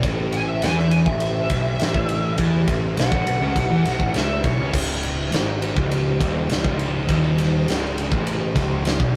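A big acoustic rock kit sits up front in this ominous, brooding stoner and doom metal excerpt, its punchy kick, medium-tuned snare, crash and ride ringing in a big room. From 0.3 seconds a compressed fuzz lead guitar takes a solo run through wah and distortion until 4.7 seconds, where the music moves into its second section. Beneath it, two thick, dark fuzz guitars grind out a picked riff in the background. A bright, growly bass, direct and amped with overdrive, holds down the low end. Entering at 1.7 seconds, a very quiet, tense, string-like drone holds sustained chords with vibrato and its own reverb, adding a detuned, ring-modulated haze. The whole take has a rough rehearsal-room feel under light reverb, in steady straight 4/4.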